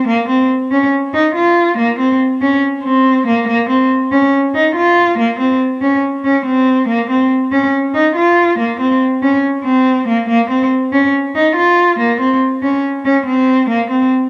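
A lone bowed cello opens the recording, one player placed up front yet carrying a distant, hazy quality, its tone softened by a low-pass filter and the worn character of cassette tape. This short cut from a longer hip hop piece sits in a half-time feel and carries a tense, dark mood. The cello stays in a narrow, low-middle register, and the playing is expressive, with vibrato and portamento gliding between notes. A moderate spring reverb surrounds the instrument in this home cassette recording. The opening passage gives way to a longer second passage at 3.5 seconds, and the cello plays alone until the end at 14.1 seconds.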